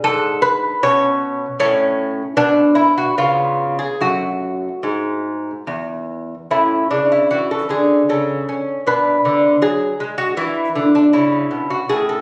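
A delicate, fingerpicked solo lute with nylon double strings and some octave-doubled strings, sitting up front, opens this radiant, dance-like baroque-style classical piece in 3/4, played with a rubato feel at 71-80 BPM and moving from F# minor to A major at 6.5 s, all heard in a moderately reverberant recital hall captured on a phone, as a portion cut from a longer piece.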